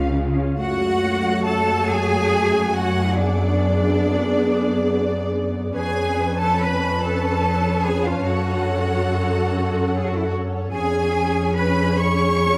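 Up front and focused, a bowed double bass section anchors this solemn, elegiac slow romantic movement for string orchestra in F# minor, unfolding with rubato at 48 BPM in 6/8, as a rich cello section shares the bass, a close viola section with expressive vibrato carries the accompaniment, a clear violin section sings a second line above, and a distant, lush violin melody sits in the background, the harmony passing from F#m through G#m7b5/F# and C#7/E# in a vast, echoing cathedral reverb.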